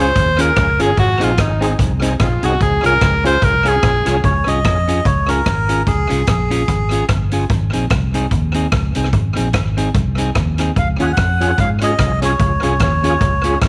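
A clear, smooth-topped tenor saxophone solo with light vibrato opens this cheerful, upbeat ska excerpt in Db major at 147 BPM with a swung feel, over twangy, picked clean electric guitar, round, dark fingered bass, a small-room street-band drum kit with a boomy kick and tape echo on its hi-hat, kick and rim clicks, and gritty overdriven tonewheel organ stabs set in the background with fast rotary speaker, chorus vibrato and tape echo, before a reedy, breathy melodica takes the melody up front at 4.2 seconds and returns at 10.8 seconds, with the organ stabs coming back soon after.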